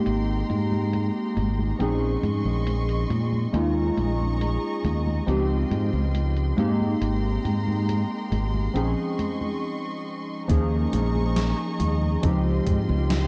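Vaporwave at a slow 69 BPM in a hazy, melancholic mood, cut from a longer piece, where warbling lo-fi synth keys with lush chorus, 12-bit sampler grit and tape echo drift over dark, woody bowed strings and a bright, up-front fingered electric bass, while a gated 80s drum machine of congas, muffled hi-hat and gated snare sits in the background, with a break at 9.6 seconds before a thumpy electronic kick joins at 10.5 seconds, all moving through lush chords from Abmaj9 to Dbmaj9#11 in a dark, cassette-tape production with concert hall reverb.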